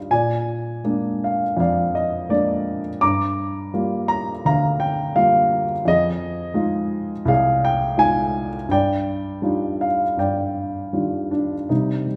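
Moody and brooding, this lyrical classical excerpt features a solo baby grand piano played with rubato at roughly 78-87 BPM in 4/4, spanning C2 to D6 across its 12.2 seconds. The piano sounds dark, mellow and somewhat boxy, with short sustain and audible action noise that keep it intimate and up front. It sits in a wet recital hall reverb as the chords move from Bb7 through Gm7 and Fm7 to Ebmaj9/G.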